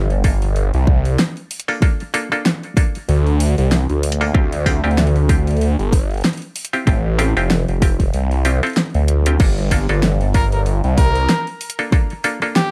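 Glitch hop at 95 BPM in 4/4, with a swung sixteenth-note feel in G dorian, this funky, gritty fragment is cut from a longer piece and moves from Gm9 to Dm11 and back to Gm9. A punchy, up-front electronic kick leads the low end alongside a thick, swirling phased detuned saw bass, saturated with overdrive, that drops out at 11.3 seconds. Layered pop drums add a fat snare, hi-hat, rim clicks and crash cymbal, with a short drum fill around 9.1 seconds. A muted, twangy clav plays nasal stabs through vintage 12-bit sampler grit, sidechain pumping and dub echo. At 10.3 seconds a bright solo trumpet enters with vibrato and scooped notes, its phrases trailing dub echo. The mix is dry, with little reverb, and vinyl crackle sits prominently over the whole recording.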